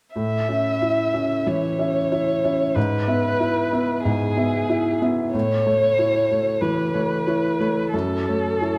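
Neoclassical piano and strings in A major at a rubato 92 BPM, this tender, hopeful excerpt pairs a woody, boxy upright piano accompaniment, close enough that its action noise is audible, with a veiled con sordino violin melody from a single player, dark and bowed with vibrato and portamento, both up front in a lingering church reverb as the harmony moves from A through E/G# back to A and on to F#m7.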